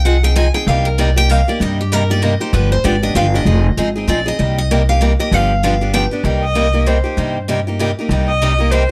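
Heard through close, detailed microphones with a light reverb, this fiery, virtuosic fragment of acoustic string swing moves as a swung waltz in three, cut from a longer piece. A full-bodied dreadnought guitar carries the picked melody with audible finger squeak. A boxy, up-front parlour guitar with fresh strings picks the accompaniment, and a woody, thumpy gut-string upright bass is plucked beneath. At 6.4 seconds a single bowed violin takes over the lead with a soft attack, vibrato and expressive portamento.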